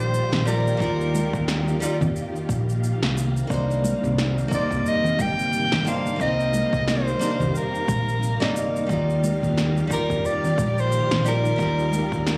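A lightly swung sixteenth-note groove in 4/4 carries this smooth, wistful sunset chillout fragment, cut from a longer piece. A deep house drum kit sets the pulse with an overdriven, punchy snare, shaker and toms, joined by bright congas tucked in the background, and an overdriven electronic kick that enters at 0.8 s with a deep, layered thump. Beneath them a mellow fretless electric bass sits dark and round, while a fingerpicked nylon-string guitar with fresh strings adds full-bodied accompaniment through a delay, and a soft vintage string machine holds silky, slow-attack chords shimmering with ensemble chorus. Up front, a breathy soprano saxophone sings the whispered, intimate jazz melody with scooped notes and light vibrato, its tape echo trailing each phrase. The harmony drifts from Ebmaj9 to Cm9 and back, and the whole sound carries the compressed, club-reverb haze of a phone recording made in the room.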